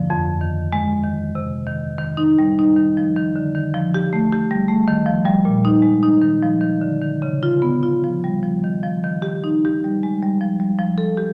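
Playful and flowing, this brief passage from a longer contemporary classical piece features a single marimba played with medium hard mallets. The tempo drifts between 93 and 107 BPM in a rubato 3/4, centered in Eb major. The marimba sits up front with a warm, mid-forward tone, spanning from F2 to A4 across the full 11.3 seconds. A short opening on Fm7 gives way at 2.0 seconds to a longer section that moves through Eb, Fadd9, Ebadd9, Bb7sus4 and Db7 before settling back on Eb and closing on Fadd9. A wet recital hall reverb with a 1.3-second decay surrounds the instrument and gives it a sense of space.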